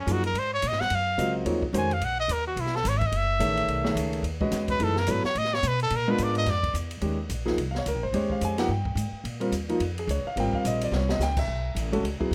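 A bright, punchy trumpet solo with light vibrato opens this open, spiritual modal jazz excerpt at 216 BPM in swung 4/4, over woody, thumpy pizzicato upright bass, a clear, intimate concert grand piano with audible action noise, and a small-room acoustic drum kit with dark cymbals, a high-tuned snare and a boomy kick, until the trumpet stops at 6.8 seconds and bass, piano and drums carry on through sus4 harmonies in Eb mixolydian, tuned to A4 = 445 Hz, with a drum fill at 10.9 seconds in light reverb.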